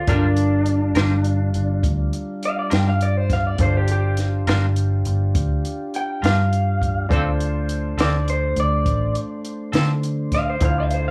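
Soulful and smoky, this slow 12/8 blues is cut from a longer piece, led by a slightly broken-up, lo-fi electric guitar through a small old amp that takes the solo up front, bathed in spring reverb. A dark, foam-muted fingered bass and a compact cocktail kit with a high-tuned snare and punchy kick sit close. A bright semi-hollow guitar with tremolo plays accompaniment until 9.9 seconds, a mellow, flute-like tonewheel organ holds sustained chords through a slow rotary speaker, and a polished concert grand with audible action noise stays in the background as the harmony moves from Gm7 to Dm7 in a small, lightly reverberant room.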